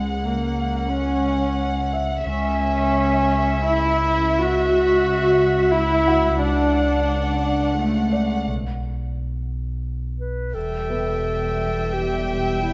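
Set in a straight three-beat metre, this uneasy, mysterious stretch of suspense film score unfolds as a short cut from a longer cue. Bowed sul tasto strings carry it from the start: a dark, up-front viola section gives the accompaniment, a chamber violin section with vibrato and soft attack holds the melody high above, and cello and double bass sections, the latter very quiet, anchor the low end. Beneath them a deep, full sine sub bass with an added octave sustains a drone, while a grand piano adds texture in the background. The harmony drifts through shaded chords before a break at 8.5 seconds suspends it, and a mellow, up-front solo clarinet with a smooth top enters at 10.2 seconds as a second line. At 10.6 seconds a studio violin section with light vibrato joins on a single pitch as the music settles onto a minor chord. Moderate scoring-stage reverb and a dulled, intimate top end keep the whole sound close and warm.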